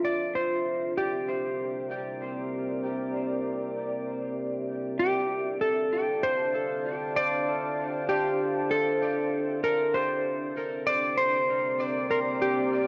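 A clean, dark lap steel guitar sings a slide melody through dub echo over a deep, moody pad of detuned sawtooth and sine with a sub octave, chorus and slow attack, whose filter sweeps during the first 5.0 seconds, in this spacious ambient fragment at 97 BPM in D minor, moving from C7 to Dm7 at 5.0 seconds and back to C7 at 9.9 seconds, all bathed in a wet echo-chamber reverb with softened highs.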